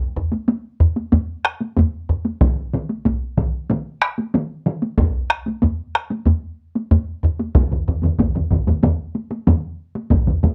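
Driving and ceremonial, this short cut from a longer piece of Japanese traditional taiko drumming moves in a straight 4/4 feel. Two taiko ensembles played with hard sticks open almost at once, close, dry and up front. At 2.4 seconds two more ensembles struck with heavy sticks join, also up front but heard in a small-room ambience that gives the massed drums a moderate sense of space.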